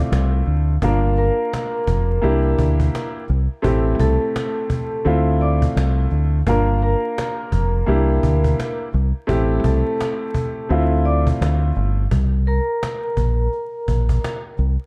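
A dark, warm production with vinyl crackle and studio reverb frames this reflective, moody boom-bap hip-hop excerpt, cut from a longer piece, moving at 85 BPM in 4/4 with a swung sixteenth-note feel. A dark upright piano, mellow and woody with long sustain, sits up front through a cassette-tape coloring and filtering, laying down chords such as Dm9, Gm7, C9 and Am7 until it stops at 12.0 seconds. Beneath it, a deep dub fingered electric bass, round and amped, holds the low end prominently from the first moments to the close. A snappy cajon with snares adds an acoustic, live-room pulse at a lower level. Entering at 1.2 seconds, a vibraphone played with medium mallets carries the melody with a metallic ring and slow motor vibrato, shaped by filtering and trailed by analog delay. The closing stretch shifts to a Bbsus2 chord at 12.1 seconds, leaving bass, cajon and vibraphone to finish the passage.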